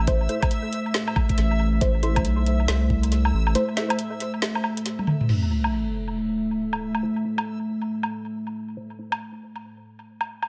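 A dark, detuned analog pad with chorus, a thick saturated sub bass and a reversed, granular swelling texture with built-in reverb open this brooding deep dubstep excerpt. They are joined at once by muted, filtered dub chord stabs with phaser and dub echo, a knocking electronic kick, and an up-front garage kit of woody snare, metallic hats, toms, crash and woodblock, shaded by low-pass filters and tape echo. The kick and sub bass are gone by 3.6 seconds for a break, and after a drum fill an electronic sub drop lands at 5.3 seconds, leaving pad, stabs and kit to carry the heavy half-time feel through an echo-heavy mix.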